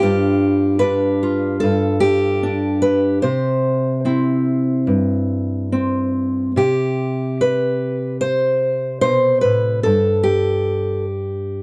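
A lone fingerpicked steel-string acoustic guitar, warm and up front, opens on a G7 chord and settles into C major in this peaceful, hopeful folk piece at a loose, rubato 74 BPM, its phrase heard twice across 11.6 seconds with a light reverb in a dry, close 1970s-style studio sound.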